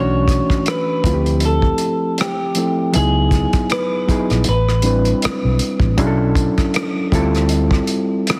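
An overdriven reed electric piano sits up front in this short, late-night neo-soul fragment, its gritty, reedy chords pushed through a combo amp across a sultry run of minor eleventh harmonies that opens on Bm11 and moves through Dm11, C#m11 and Am11. The tempo is a relaxed 79 BPM in 4/4, with a light 16th-note swing. An electric guitar through a small old amp carries the melody with a bright, twangy, slightly broken-up picked tone before dropping out at 5.6 seconds. Underneath, a vintage foam-muted fingered electric bass gives a dark, round, amped low end that stops at 7.8 seconds. A soul drum kit enters at 0.3 seconds, smooth and up front in a small room, with a punchy kick, hi-hat and rim click. Light studio reverb surrounds the mix, and heavy multiband compression squeezes it into a dense, radio-style sound, clipped from a longer piece.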